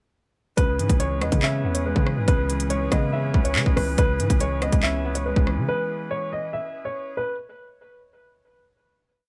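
A hard-clipped drill drum kit leads this short, menacing hip hop and drill piece in C# minor, running at 141 BPM with a half-time feel and tuned slightly flat to A4 = 436 Hz. Up front and tape-warm, the electronic kit sets skipping, crisp hi-hats with fast rolls against handclaps, rim clicks and a kick, while a heavy, punchy 808-style bass holds long sub-bass notes that follow the kick, with pitch slides and a fast, decaying attack. Over a single C#m7 chord, a dark, worn grand piano loops a mellow melody like a sample, its action noise audible and its sustain short, both pianos filtered to dull their top end. A clear baby grand repeats an open, long-sustaining arpeggio in eighths beneath it, and a distant, roomy woodwind section holds a soft classical pad with light vibrato. The whole cold hook lasts from 0.6 to 7.4 seconds, with the drums and bass dropping out just before 6 seconds to let the pianos and woodwinds ring out in a moderate studio ambience.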